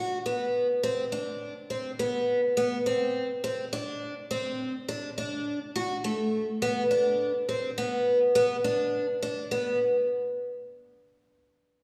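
A picked twelve-string acoustic guitar carries this short progressive instrumental fragment alone, its octave-doubled strings giving a shimmering, bright tone with a slightly boxy body and audible finger squeak. Set up front in the mix, the guitar moves through a compact range from A3 to F#4 in B phrygian, tuned a touch low to A4 = 436 Hz. The mood is driving and intricate, with a straight feel in 5/4 at 104 BPM. The guitar sounds until 9.8 seconds, and a new section begins at 9.5 seconds, just before it stops. A wet concert hall reverb with a 1.9-second decay surrounds the playing, placing it in a resonant church-like space.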